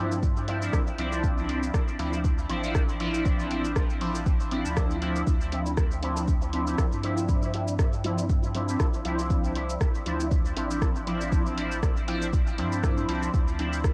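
A swung 16th-note groove at 119 BPM in 4/4 drives this cavernous, hazy dub techno excerpt in D minor. A deep, layered, tape-warmed electronic kick sits up front from 0.2 s beside an analog drum machine's cabasa, hi-hat and rim click steeped in dub echo. Beneath them a round sine sub bass pumps with the sidechain, while a juicy, detuned square-and-sawtooth polysynth plays resonant, filter-swept stabs on a Dm9 chord, coloured by chorus, phaser, sidechain pumping, dub echo and cassette tape, all captured as a home cassette recording in a digital ambience.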